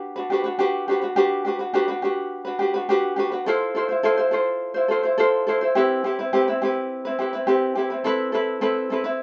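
A light reverb and a live, single-room sound frame this short, easy-going pop clip, cut from a longer piece. A lone acoustic ukulele, fingerpicked and sitting up front with a warm, light tone, moves through Gmaj7, Fmaj7 and Cmaj7 before settling on Amadd9 at 8.1 seconds. Its gentle, heartfelt playing stays in a compact register throughout.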